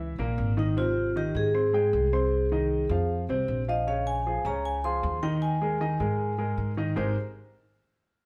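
Lively and danceable, this short jazz excerpt in Ab major moves at a straight 155 BPM in 4/4, with an intimate concert grand piano comping over chords such as Abmaj7 and Bbm11, its action noise audible and its deep low end up front. A woody, dark upright bass plucks steel strings beneath it. From 0.6 s to 6.5 s a vibraphone, struck with medium hard mallets and its motor off, carries the metallic, airy melody, all three players sharing one large studio room with a wet reverb.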